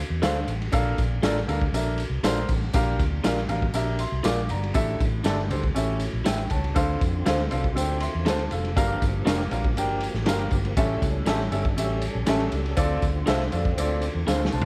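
A gritty, saturated garage drum kit with a punchy kick drives this passionate, uptempo 1960s-style soul cut at 120 BPM in D minor, joined by a round, foam-muted electric bass, a woody upright piano, slightly broken-up guitar stabs through a small old amp and a jingly tambourine in the background, while a very quiet, fat tonewheel organ with key click and slow rotary speaker enters at 6.7 seconds over a Dm7, Gm7 and A7 progression before a closing drum fill at 14.3 seconds.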